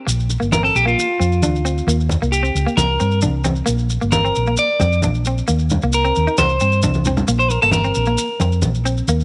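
Highlife guitar band music with a sunny, danceable mood, moving at 133 BPM in a straight 4/4 in Bb major, heard in a short cut from a longer piece. A clean, picked electric guitar with subtle chorus carries the accompaniment and stands out as a solo throughout, while a dark, round hollow-body short-scale bass sits up front with an amped, fingered tone. Congas with a thin, low-tuned skin and a vintage, band-limited character join maracas that sound grainy, mellow and close, and a drum fill lands at 6.9 seconds. From 0.5 seconds a twangy, scooped electric guitar at the edge of break-up plays arpeggios up front, coloured by slapback echo. The harmony moves between Bbadd9, Eb and C5 chords before settling on Bbsus2, all within a moderate echo chamber reverb.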